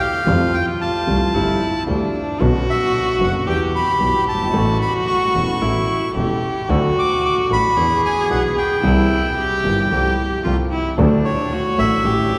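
Tango with a nostalgic, elegant rubato feel, where a reedy, dark bandoneon carries the melody up front over a sul tasto cello second line with an airy bow and soft attack, a woody, slightly detuned upright piano with audible action noise, and a focused, bowed double bass with vibrato, all bathed in the long wet reverb of a cathedral-like hall.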